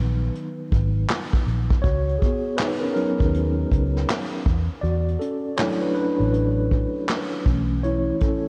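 A mellow tine electric piano carries this nostalgic lo-fi hip hop excerpt at 80 BPM with a lazy sixteenth-note swing, its clean voice coming through built-in speakers with a cassette tape tint while it moves through Db9sus4, E9sus4 and Cb9sus4 chords. A dark, foam-muted fingered electric bass sits round and punchy underneath, and a vintage brush drum kit enters at 0.3 seconds with handclaps, hi-hat, a punchy kick and a medium-tuned snare, its top rolled off in a natural studio room. All three parts sit up front in a light reverb, and the whole mix carries a cassette tape color.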